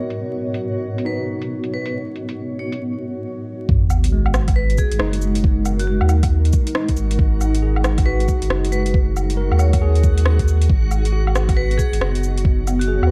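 Wistful and melancholic, this 137 BPM future garage excerpt in G# minor swings its 16ths as a clean tine electric piano through a combo amp, a cloudy granular pad with sidechain pumping and a reversed, dreamy background texture open over a Badd9/G# chord, joined at 0.1 seconds by a metallic-hatted, overdriven garage kit of cabasa, hi-hat, rim click and woodblock and at 1.1 seconds by a bright, ringing vibraphone melody with fast motor vibrato and digital delay, before a round sine sub bass, a knocking up-front kick and a very quiet sub drop arrive at 3.7 seconds on G#m9, all within a dark, vinyl-crackled production.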